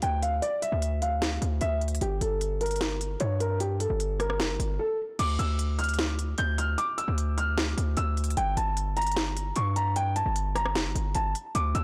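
A half-time trap pulse from an electronic kit with a sharp snare, crisp hats, rim clicks and crash cymbal drives this menacing, eerie hip hop fragment, where a heavy, punchy 808 bass sits up front beneath a dark, boxy baby grand piano melody, intimate with audible action noise and passed through a low-pass filter and digital delay, all within a blown-out, overdriven mix moving between Dmadd9 and Gm.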